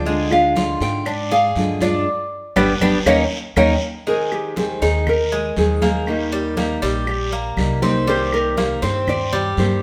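Nylon-string guitars open this 120 BPM Cuban son and guajira excerpt, one fingerpicking a warm melody over the other's bright accompaniment, with a metallic, double-strung tres arpeggiating up front and a thumpy gut-string upright bass beneath; ringing congas and woody claves join softly in the background, with a raspy guiro alongside, and after a band accent from 2.1 to 4.1 seconds the melody guitar takes a sultry solo from 4.1 seconds, all played live in a stone room with a reverberant sheen.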